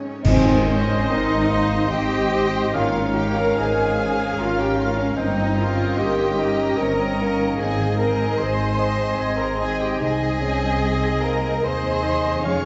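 Tender and warm, this slow romantic orchestral movement in Ab major moves at 74 BPM in a rubato 3/4, its violin section carrying a smooth, vibrato-rich melody from 0.7 seconds over a warm cello section with portamento, rich double basses, and a ringing harp playing arpeggios. Supporting lines come from a second violin group, violas, hollow flutes, a bright oboe, a very quiet clarinet, a mellow bassoon and a dark, distant French horn section sustaining chords. A brief accent of timpani, bright clash cymbals and concert bass drum opens the passage and is over by 1.9 seconds, and the whole is heard from further back in a reverberant recital hall.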